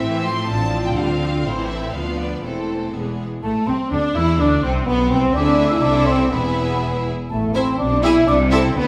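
A stone room's reverb surrounds this urgent, restless classical-period orchestral passage in a rubato 2/4, where a rich, distant violin section carries the melody over a clear second violin line, smooth viola accompaniment, soft-attack French horn chords and a bowed bass of focused cellos and double basses, until an airy, mellow flute joins with a second line at 3.4 s.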